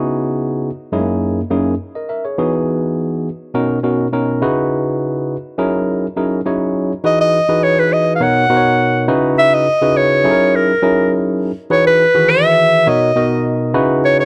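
A clear, close-miked clarinet in classical style takes the solo melody up front from 7.1 seconds, touched with slapback echo, over a barky, clean tine electric piano played through a combo amp that carries the extended chords from the start of this smooth, danceable funk fragment, all captured as a dry, close 1970s-style studio recording with light reverb and small room ambience.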